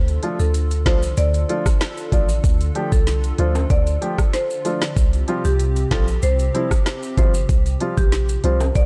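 A dark, warm production frames this sultry, bouncy dancehall excerpt at 95 BPM in D minor, where a boomy 808-style bass and an up-front electronic drum kit, with its knocking kick, woody snare, smooth hats and rim clicks roughened by vintage 12-bit sampler grit, drive the groove, while maracas and timbales add a live-room acoustic touch, a baby grand piano supplies accompaniment beneath a rosewood marimba melody trailed by delay, and a hollow, flute-like pad with ensemble chorus and sidechain pumping sustains chords that shift from Dm to Csus4 at 5.0 seconds.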